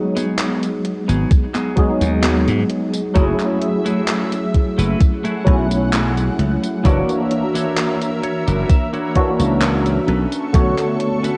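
Cassette-tape haze and light digital ambience wrap this woozy, melancholic vaporwave fragment, where a barky tine electric piano with analog chorus and tape echo carries the chords from the start, a twangy clean electric guitar plays a compressed riff with a fill at 7.8 seconds, a gated 80s drum machine brings overdriven handclaps, hi-hat and tambourine, a growly slap bass arrives at 1.1 seconds with a thumpy, up-front electronic kick just after, and a lush, detuned unison pad with a slow attack joins at 3.5 seconds.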